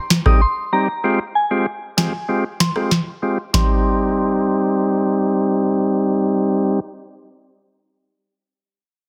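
A booming analog drum machine opens this short dancehall excerpt at 96 BPM in C minor, its deep kick, tonal snare, rim click and finger snaps sitting up front with a tape-warm, small-room character. At 0.3 seconds an overdriven tonewheel organ enters as accompaniment, thick and gritty with percussive third-harmonic attack, vibrato and audible key click, moving between Cm and Fmadd9. A soft FM synth bell carries the melody high above, pure and warbling with a fast, decaying attack, softened by chorus, a low-pass filter and digital delay, and sitting lower in the mix. The drums drop out at 3.7 seconds, leaving the organ and bell to carry the section that follows, and the bell drops away at 5.4 seconds. The mood is bouncy yet tough, framed by light reverb and a dense, heavily limited modern master.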